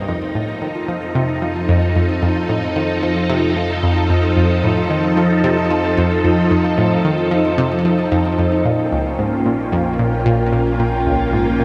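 Ambient, sequencer-driven space music at 112 BPM in 4/4, mysterious and hypnotic, cut from a longer piece and bathed in a huge, wet reverb. Up front, a swirling, warbling string machine with ensemble chorus and phaser fades in over its sustained chords during the first 8.7 seconds, while a round, nasal analog pluck riff with chorus, phaser and delay moves over an evolving analog drone bass with chorus and a mellow, ringing concert harp arpeggiating with delay in the background. The harmony moves from F7 to Bbm at 8.7 seconds, and at 8.8 seconds a resonant, bubbling stepped-filter texture enters high above, carrying chorus and its own reverb.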